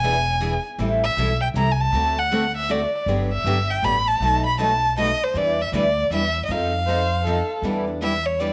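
Fiery, virtuosic jazz manouche in E minor at 158 BPM in a swung 3/4, cut from a longer piece, with a bowed violin up front carrying the melody in an expressive voice full of vibrato and portamento. Two picked acoustic guitars accompany, an old ladder-braced one sitting dusky and worn-stringed in the background beside a bright, fresh-strung steel-string guitar, while a woody pizzicato upright bass stands up front through chords like Am7, D7, Gmaj7, B7 and F7. At 6.9 s a darker second violin with a smooth top adds a brief line, all set in a moderate echo-chamber reverb.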